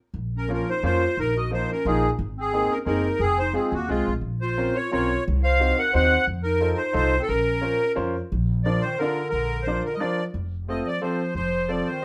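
A moderate studio reverb surrounds this short cut from a longer musette waltz, with a reedy, sweet accordion up front carrying the melody over a swung 3/4 at 177 BPM. A warm, classical-style clarinet weaves a second line beneath it, while a brilliant, intimate upright piano, its action noise audible and its notes ringing with long sustain, fills out the accompaniment above a growly, thumpy pizzicato upright bass with a dark, woody tone. The bittersweet, nostalgic mood sits in Bb minor before brightening to Bb major at 8.3 seconds.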